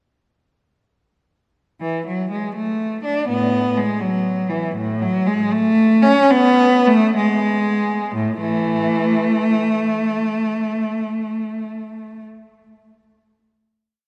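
Classical baroque-style suite movement in A major for a single bowed cello, dance-like and serene in a rubato 6/8 at 57-85 BPM by the dotted quarter, in which the clear, focused cello enters at 1.8 seconds up front with vibrato, double stops and spread chords, its melody leaping to bass notes before slowing from 4.0 seconds into a final chord held from 8.2 to 12.0 seconds, all in a wet church reverb.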